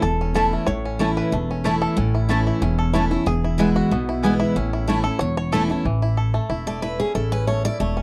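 Lively and driving, this short bluegrass excerpt opens with a twangy, fingerpicked banjo solo carrying the melody over full-bodied picked acoustic guitar, a thumpy, woody upright bass and warm, picked mandolin stabs with doubled strings that stop at 5.6 seconds, before the up-front guitar takes its own solo at 5.9 seconds, all in a dry, close 1970s-style studio sound.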